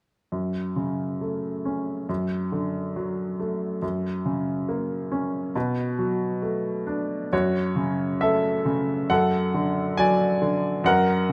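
A bright, up-front baby grand piano carries this melancholic, wistful classical solo from 0.3 to 11.3 seconds, moving with lyrical rubato around 68 BPM in 4/4 in F# minor, tuned to A4 = 439 Hz. Its range spans F#2 to G#5 as the harmony passes through F#m, D/F#, F# and Bm7 before returning to F#m and D/F# when a new section begins at 7.3 seconds. A moderate scoring-stage reverb lends the natural tone a gentle sense of space in this short cut from a longer piece.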